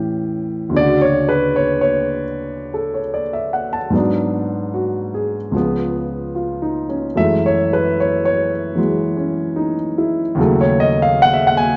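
Swung eighths at 75 BPM in 4/4, loosened by rubato, carry this late-night solo jazz fragment, where an intimate, up-front grand piano with audible action noise moves through chords from A7 and Dmaj7 to G#m7b5, C#7, F#m9 and D#m7b5 across the full 11.8 seconds, set in a moderate large-studio reverb.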